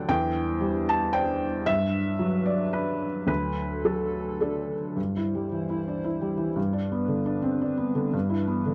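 In a rubato 3/4 at 113 BPM, this brief neoclassical piano and strings excerpt in G major feels intimate and hopeful. A felt-muted upright piano sits up front, soft and mellow, playing accompaniment from D2 to A5, while a hollow, flute-like pad with a slow attack and chorus holds sustained chords beneath it at a lower level through 8.7 seconds. The harmony moves from Cadd9/E through Gmaj7 and D, then turns at 5.0 seconds to C/G, G and Em7/G, in a dry, close 1970s-style studio sound with light reverb.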